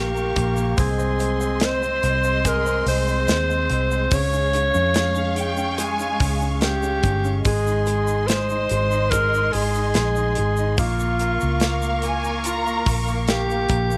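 Emotional and heartfelt, this 14-second excerpt from a longer pop ballad moves at a slow 72 BPM in straight 4/4, in Ab major, with chords passing from Bbm through Ab/C, Db and Ab before returning to Bbm. Up front, a jazz-style alto saxophone with a vintage, warm tone carries the solo melody between F4 and Db5, touched by a slapback echo. A clear, polished baby grand piano supplies accompaniment in its middle register, while a lush symphonic string section holds sustained chords with expressive vibrato and a soft attack. Underneath, a dark, round, foam-muted fingered electric bass sits punchy and forward. A grainy, bright tube shaker tucked in the background joins at 0.2 seconds, followed at 0.4 seconds by a small-room acoustic drum kit with a tight kick, medium-tuned snare and hi-hat. A smooth, even violin section adds a second line high above at 5.0 and again at 11.6 seconds, and the whole mix stays dry with little reverb.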